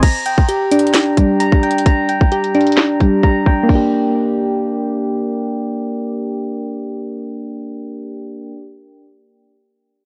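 Hip hop trap cut from a longer piece, melancholic and menacing in a half-time feel: soft, round electric-piano-like synth keys play up-front arpeggios with chorus, tape echo and a mellow filtered tone throughout, while a gritty 12-bit trap kit of hard-clipped kick, sharp snare, handclaps, metallic hi-hats and crash cymbal drives only the first 3.8 seconds before dropping away, all captured in a dry, saturated hardware sound.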